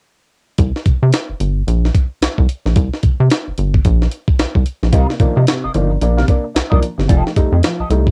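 Funk groove in C dorian at 111 BPM with a 16th-note swing, cool and funky, cut from a longer piece and captured as a dry home cassette recording. A rubbery, bouncy square-wave bass with a resonant filter pluck and a gritty, pitched-up breakbeat kit with a thumpy kick and high-tuned snare sit up front from 0.6 seconds, the drums carrying tape grit. At 4.9 seconds a dark, clean semi-hollow guitar with wah and analog chorus enters together with a worn, woody, slightly detuned upright piano playing stabs over Cm11, moving to F9 at 7.1 seconds.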